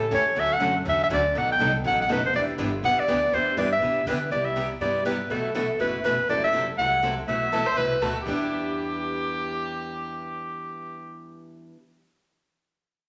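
A swung 4/4 pulse drives this virtuosic, bittersweet stretch of acoustic jazz manouche, where two bright, boxy picked steel-string guitars and a woody, thumpy pizzicato upright bass carry the accompaniment beneath a clear, scooping, vibrato-laden solo clarinet up front until 8.0 s, as a nasal, reedy bowed violin enters with a second line at 7.5 s, set in a large, wet studio reverb.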